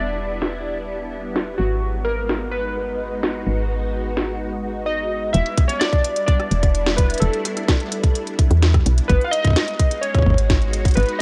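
A straight 4/4 pulse at 128 BPM drives this intricate, melancholic IDM passage, cut from a longer piece. From 0.4 seconds an organic electronic kit sets out hi-hat, rim click and a woody snare, with the snare and smooth hats both dulled by low-pass filtering. A tight, up-front electronic kick joins at 5.6 seconds as the second section gets underway. Beneath it, a round, mellow FM bass with a fast, decaying attack anchors the low end. Silky string-machine chords with slow attack and long release shimmer through phaser and ensemble chorus, moving between Em7 and G#m7. On top, detuned, nostalgic lo-fi synth keys carry the melody with chorus, delay and ring-modulated colour. The whole mix sits dry and close, worn by the wobbling pitch drift of old cassette tape.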